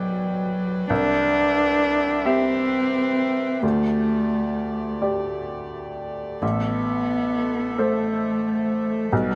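Fragile and reflective, this short neoclassical fragment for piano and strings drifts in a slow, rubato 6/8 at 44 BPM in A dorian, moving through Gmaj7/B, Cmaj7 and Dsus4 before settling on Am at 6.4 seconds. A dark, intimate cello carries the second line up front, its bowed sul tasto tone soft in attack and smooth on top with vibrato, while a bright, woody upright piano accompanies with a brilliant, long-sustaining ring. Beneath them a reedy, breathing pedal harmonium holds mellow sustained chords in a boxy small room, all under a light reverb.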